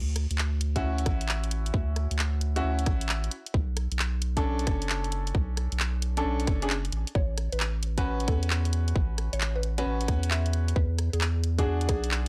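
A dry, gritty recording with transformer saturation, cassette tape grain and a digital ambience frames this skippy, soulful two-step UK garage excerpt at 133 BPM in B dorian, swung on the sixteenths over Dmaj7, Bm7, A69 and E9. A deep, thick saturated sub bass sits up front from the start, joined by a tight, layered electronic kick and a garage kit of handclaps, hi-hat and rim click, both with small room ambience. A clear grand piano adds stabs through tape echo from 0.8 seconds, and at 7.2 seconds a woody, round, mallet-like FM pluck sneaks in far back in the mix with chorus, phaser and tape echo.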